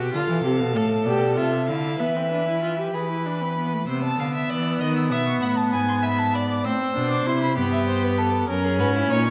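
A focused, distant violin carries the melody in this baroque-style fugue for string quartet, entering at 0.1 seconds in a clear, bowed voice with vibrato that sits high above the ensemble. Beneath it, a second violin with an even, clean tone plays a supporting line, while a rich viola fills in the accompaniment with steady smoothness. The cello anchors the bass up front, its bowed tone full and round with a soft top. The mood is driving yet contemplative, moving in a straight 6/8 feel, with the harmony shifting through tense diminished and dominant colours before a new section begins at 3.9 seconds and moves between minor chords and dominant colours. The quartet sits in a reverberant recital hall under a dark, mellow production, and the short passage is cut from a longer piece.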